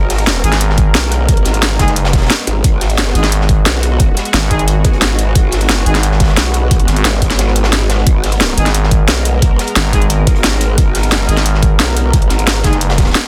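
Aggressive, wobbling growl bass with a bright, saturated formant edge anchors this tense, futuristic dark technical drum and bass at 177 BPM in G# minor, joined by a thick FM growl bass, an overdriven, knocking electronic kick that drops out from 7.4 to 8.1 seconds, an up-front drum and bass kit with cracking snare and bright hats, a gritty breakbeat kit with a high-tuned snare sitting in the background, a sweeping, detuned sawtooth pad with resonant filter swells holding a G#madd9 chord, and mellow brass ensemble stabs with delay, set in a small room under a dense, heavily limited master.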